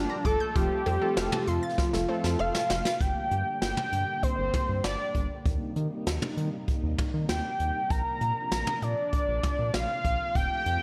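Melancholic and nocturnal, this synth-pop fragment is carried by a fat, detuned analog lead with chorus, vibrato and slapback echo, set up front over a deep, round analog bass and dark, warbling string-machine cellos in the background. Nasal analog synth brass and a bright, phased analog pluck playing arpeggios colour only the opening, the brass stopping at 2.6 seconds and the pluck at 3.0. A jazz brush drum kit with a boomy kick, cowbell and gated reverb enters at 0.2 seconds and plays an early fill.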